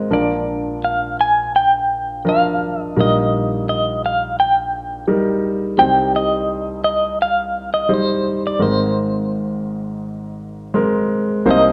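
A clean, dark semi-hollow electric guitar carries the melody up front, its fingered hollow-body tone shimmering with tremolo as it sings in a high register from 0.1 s. Alongside it, a warm grand piano provides the accompaniment, polished and present with a short sustain, spanning a broad range from deep bass notes to bright upper tones. This intimate, reflective acoustic folk-pop ballad moves at a relaxed 85 BPM in a straight 4/4, tuned slightly high at A4 = 442 Hz. The harmony drifts from Bb through Eb/Bb and Cm before settling on Abadd9 at 8.6 s, lending a gentle, searching quality. A moderate large-studio reverb and a dusky production give the brief passage, cut from a longer piece, a soft, enveloping glow.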